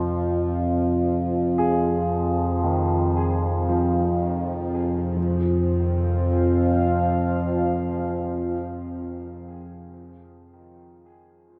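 Awash in wet plate reverb and heavy echo, this cavernous, unsettling dark ambient drone in F minor drifts in free time: an up-front, overtone-sweeping sawtooth drone holds steady with chorus while a deep, moody pad with wave folding and ring modulation sustains its chords, a barely audible quartz singing bowl rings pure and meditative until 5.2 s, and from 1.6 s a boxy, mellow concert grand piano spins tape-echoed arpeggios through to 11.6 s in this passage cut from a longer piece.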